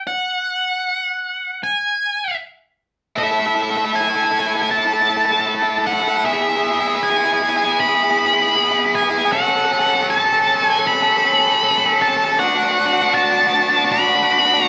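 A straight 4/4 pulse at 78 BPM drives this cinematic, euphoric rock excerpt in A major, which opens with a dark, fuzz-laden octave-fuzz lead guitar picking a melody alone, up front in the mix. At 3.2 seconds a double-tracked, overdriven electric guitar enters with a picked riff bathed in spring reverb, and the passage builds over an A5, E, F#m and D progression. The band plays live in one room, wrapped in a wet studio reverb.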